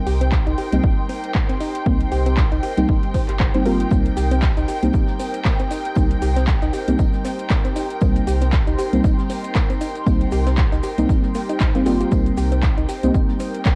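Deep house with a warm, deep mood, cut from a longer piece and heard through cassette tape with light small-room reverb, built on a punchy, up-front electronic kick, a full sine sub bass with octave, a mellow, detuned chord stab carrying a filter sweep and analog delay, a breathy, phased pad holding sustained chords, soft, round pluck arpeggios, a distant, lush string section and an overdriven deep house kit of handclaps and metallic hats, with the pad, stab, strings, pluck and bass pumping to the sidechain, while a very quiet brushed jazz kit and grainy maracas join in the background at 3.9 s.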